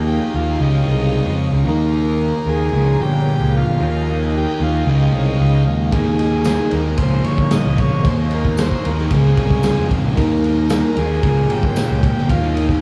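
This hazy, hypnotic psychedelic rock excerpt opens with a lush sawtooth string machine holding soft-attack chords in the background, a double-tracked fuzz guitar riff run through phaser, and an up-front overdriven picked bass, while a buzzy vintage combo organ carries the melody through spring reverb and diffuse ambient delay. At 5.9 seconds a raw garage drum kit arrives with a punchy kick, a medium-tuned snare, ride cymbal and a gritty, saturated, rolled-off sound, and a jingly tambourine joins faintly behind it at 6.4 seconds. The harmony circles through Ebsus4, Dbadd9 and Bbm in a dreamy mix soaked in huge ambient reverb.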